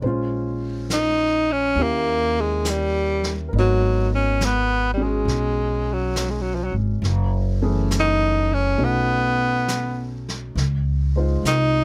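Piano, pizzicato upright bass and a brushed vintage drum kit open this short jazz ballad excerpt together, setting a melancholic, intimate mood in a slow swing. The upright piano sounds woody and natural with a long sustain, while the bass sits up front with a warm, steel-strung tone. The brushed snare and hi-hat stay soft in the mix, with a medium-tuned snare and a rolled-off top that gives the kit a natural studio-room feel. At 0.9 seconds a breathy tenor saxophone takes the solo melody, clear and present, using subtone, vibrato and scooped notes in a classic jazz style. The harmony drifts through rich chords such as Bbm9, Eb7b9 and B9 before settling on Dbmaj9. Close, detailed microphones and very little reverb keep the whole performance intimate and immediate.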